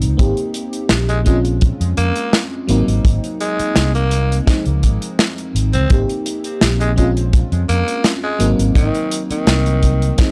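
Vaporwave with a dreamy, nostalgic mood, built on a lush FM electric piano blended with a soft pad, coloured by analog chorus and tape echo, over a dark, round fretless electric bass, a punchy kick and an acoustic kit with hi-hat and a medium-tuned snare, all set up front. At 1.1 seconds a growling tenor saxophone enters as the solo voice, breathy and raspy with light vibrato and gritty 12-bit sampler texture plus its own tape echo. A small room and a dry, gritty hardware sound frame this brief fragment of a longer piece, which drifts through jazzy seventh and ninth chords.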